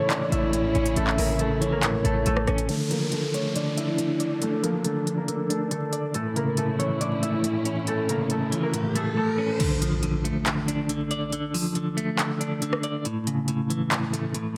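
A half-time trap groove at 139 BPM, with crisp hats, handclaps, rim clicks and crash from an electronic drum kit, drives this brooding, eerie hip hop excerpt in D harmonic minor, while a punchy, tight 808-style bass and a soft, breathy flute-like synth lead sound only until 2.7 s. An up-front, twangy clean electric guitar with tremolo carries the accompaniment, a ringing, fingerpicked concert harp with tape echo plays the melody, and a bowed string section with vibrato and portamento holds sustained chords in the background, over light reverb and vinyl crackle. A filter sweep runs from 2.7 s and a riser leads into a brief silent gap, then at 9.6 s an impact lands as the kick drops out.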